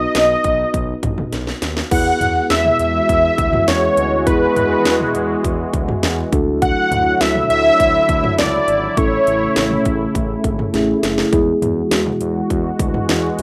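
A cool, nocturnal synth-pop passage cut from a longer piece opens with a thick, bold unison lead carrying the melody up front, its detuned sawtooth tone with a sub octave, vibrato and a mellow edge trailing tape echo and plate reverb. Beneath it, muted felt-like synth keys sit soft and dark in the background with chorus, while a smooth synth bass holds a sustained low line, and a punchy house drum kit arrives almost at once with a cracking snare, metallic hats, crash and toms. A drum fill leads to 1.9 seconds, where a sweeping resonant pad enters with slow-attack chords, its bright, detuned sawtooth sound evolving through a filter swell and chorus. The harmony moves from Eadd9 to Dadd9 and on to A, and the lead drops out at 10.2 seconds, leaving keys, pad, bass and drums to carry on after a second fill back into Eadd9. The mix has a rough home-demo quality, with the drums sounding tape-warm and re-recorded in a small room, all set in a short, wet studio reverb.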